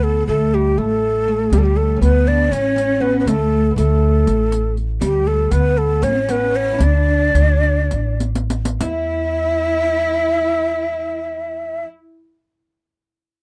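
A breathy, unsteady, end-blown ney with vibrato carries the longing, hypnotic melody up front in this dry, close 1970s-style studio cut of a Turkish makam ensemble piece in 7/8 at 192-241 BPM (eighths), over a woody, plectrum-plucked fretless oud, a thumpy gut-string upright bass, and, from 1.5 s, a clear, biting bowed cello section and a riq with bright jingles, as the music slows from 5.0 s through a drum fill before the riq stops at 9.1 s in a new section of this excerpt from a longer piece.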